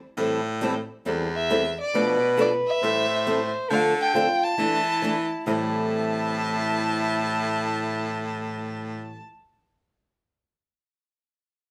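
A warm, smoothly bowed violin with vibrato carries the melody from 1.4 seconds in this fiery, swinging A minor jazz manouche passage at 136 BPM, joined at 2.0 seconds by a breathy soprano saxophone on a second line, while an edgy, punchy baritone saxophone with scooped notes plays the bass beneath two bright picked steel-string acoustic guitars (one boxy and set back) as the band plays live together in one room with moderate reverb.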